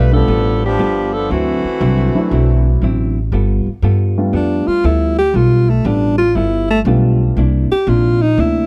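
Brassy and energetic, this short cut from a longer big band swing piece moves at 119 BPM in 4/4 with a firm swing feel, centred in G mixolydian. A clear, up-front saxophone section opens with the melody, its smooth top and light vibrato carried on a soft attack, before stopping at 2.8 seconds. Beneath it, a woody, thumpy upright bass with gut strings is played pizzicato and sits prominently in the mix, while a dark, mellow upright piano and a clean, compressed hollow-body electric guitar, picked and dusky in tone, fill out the accompaniment. From 4.4 seconds a close-miked alto saxophone takes a solo with clear tone and vibrato, riding over harmony that, having moved from G9 to D9 and back to G9, shifts to C9 at 7.4 seconds. The sound is that of a dry, close 1970s-style studio recording with a touch of studio reverb.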